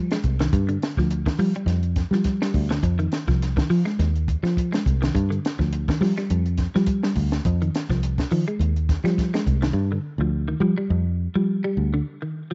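Afrobeat at 104 BPM with a light sixteenth-note swing, intense and hypnotic, built on a cycling Fm7 to G5 vamp: a clean, picked electric guitar plays arpeggios through analog chorus, a round, foam-muted fingered bass sits up front, and a compact cocktail kit with a high-tuned snare, punchy kick, hi-hat and a dark, rolled-off top plays until 9.7 seconds, all in a dry, close mix.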